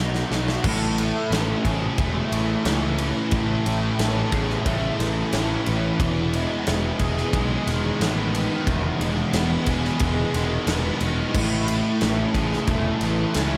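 A straight 4/4 pulse at 90 BPM carries this hazy, dreamy shoegaze and dream pop rock clip, cut from a longer piece, which opens on a brief drum fill before settling into its main groove at 0.6 seconds. The big rock drum kit, acoustic and mid-forward with a punchy kick, a medium-tuned snare and a rolled-off top, moves between crash, ride, snare and kick in a big room. Up front, a thick fuzz guitar plays the riff from E2 to G#4, double-tracked and picked, its distortion thickened by ensemble chorus. Beneath it, a dark, round fuzz picked electric bass, direct and amped with overdrive, holds the low end from E1 to C#2. The harmony moves from B to Amaj7, shifts to Emaj7 at 6.0 seconds and returns to Amaj7 at 11.3 seconds, all soaked in a lush hall reverb that gives the mix its drifting, dreamy haze.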